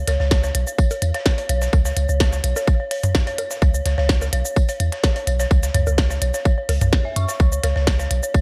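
Minimal techno at 127 BPM in C# minor, hypnotic and cool, this cut from a longer piece rides an overdriven, up-front electronic kick from 0.3 seconds, a deep, punchy sine sub bass with a pitch-drop attack and sidechain pumping, an eerie, inharmonic FM bell riff with chorus and tape echo, a clicky, overdriven minimal drum kit with a tiny snare and cabasa, tape-warm analog electronic bongos and toms, and a gritty, compressed breakbeat kit of hi-hat, snare and tambourine sitting low in the mix, all within a digital ambience.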